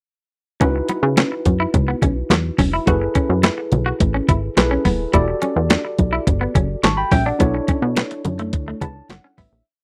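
A clean, sampler-style 12-bit drum machine sits up front in this slick, late-night piece of early-eighties boogie funk, laying down a mid-tempo boogie beat with a thumpy kick, hi-hat, handclaps and a medium-tuned snare layered with a clap. Alongside it, an up-front plucky analog bass with a fast, decaying filter pluck drives a fat, syncopated boogie line laced with chromatic approach notes, its tone punchy and ring-modulated. A worn, slightly out-of-tune tine electric piano holds rootless chords through a cycle of minor eleventh harmonies, while a bright, compressed semi-hollow guitar picks a muted single-note riff bathed in lush chorus. Damped, thin-skinned congas groove in the background with a slap on two and open tones on four. The dry, close 1970s-style studio sound carries the whole verse, which begins its fade-out at 7.4 seconds, and the electric piano slips in a short fill from 8.5 seconds as the piece fades away.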